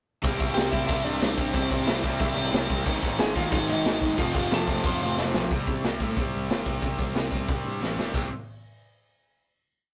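Rough and saturated, this rehearsal-room recording carries a light reverb and the grain of tube warmth. It is a short, rowdy, rebellious punk rock piece in a straight four. Up front, a gritty acoustic garage drum kit pumps the small room with a boomy kick, a medium-tuned snare, dark cymbals and rolled-off hi-hat, driving a fast punk groove with fills closing the riff and the outro. A dark, round fuzz bass plays punchy eighth notes under three picked guitars: a bright cranked stack and a very quiet, compressed, dusky overdriven guitar both chug eighth-note power chords through C, Ab and F, while a bright, double-tracked distorted guitar rings out chords until 5.5 seconds. Set back in the mix, a slightly broken-up lead guitar with tape echo sings short, song-like motifs, partly doubled in octaves, from 0.5 to 5.3 seconds. The band then settles on a C5 power chord for a brief outro and lets a final chord hang to close the piece.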